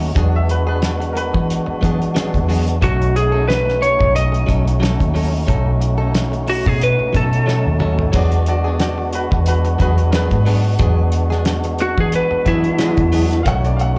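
Laid-back and soulful, this 90 BPM straight-eighth soul blues excerpt, heard as a live club gig through the venue's PA, rests on a round, foam-muted fingered bass, a cloth-damped thuddy drum kit with a fat snare and a fill at 7.5 seconds, a fat, lightly overdriven percussive tonewheel organ with key click and vibrato, and bright, clean direct-recorded guitar stabs with spring reverb tucked in the background, while a dark, slightly broken-up lead guitar carries the melody up front from 2.8 seconds and a brilliant, woody upright piano adds a second line at the start and again from 8.1 seconds over E9 and B9 chords.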